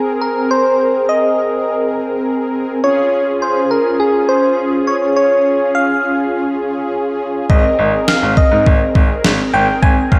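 Synth-pop in Ab major at 103 BPM, nostalgic and upbeat, this clip opens with a soft, keys-like FM synth lead carrying the melody with chorus and tape echo over mellow, brassy synth brass chords, detuned and dark, treated with chorus and phaser, moving from Abadd9 to Db. At 7.5 seconds a clear, polished baby grand piano enters on the bass line alongside a gated 80s digital drum machine with a thumpy kick and an overdriven gated-reverb snare that sits up front. The whole mix is dreamy and soaked in a wet plate reverb.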